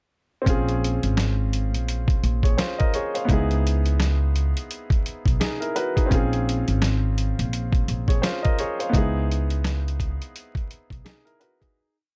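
Boom-bap hip-hop in a reflective, gritty mood, where a woody, intimate upright piano loops held, rootless minor-ninth chords with short fills and audible action noise over a thumpy pizzicato upright bass line with slides and a compressed, pitched-down sampler kit of laid-back sixteenth-note hats, kick and layered snare, all set in a dry small room with vinyl crackle before a fade-out from 8.9 seconds.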